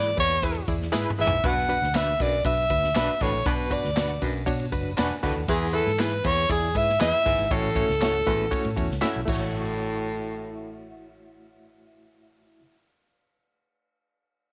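A breathy, intimate alto saxophone carries the melody up front in this short, danceable cut of uptempo 1960s-style soul at 119 BPM in A major, while a barky, lightly overdriven reed electric piano with fast tremolo supplies accompaniment and a fill at 4.5 seconds. A dark, foam-muted electric bass, a distant baritone saxophone riff with scooped notes, and a picked electric guitar with ensemble chorus playing stabs in the background fill out the band over a punchy, airy big-band drum kit with fills at 0.9 and 9.0 seconds. Close, dry tambourine, egg shaker and group handclaps add percussion, all set in light reverb with small room ambience.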